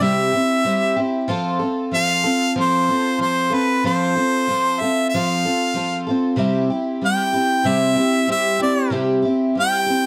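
A dry, close 1970s-style studio sound with light reverb frames this short, hopeful rock cut at 94 BPM in C major, tuned slightly sharp to A4 = 441 Hz. Up front, a clear harmonica with light vibrato and a slapback echo carries the pop-style solo melody, while a picked twelve-string acoustic guitar with fresh strings gives a shimmering, octave-doubled accompaniment. The harmony moves from C to F at 1.3 seconds and settles back on C at 6.4 seconds, with both parts playing throughout the 10.1 seconds.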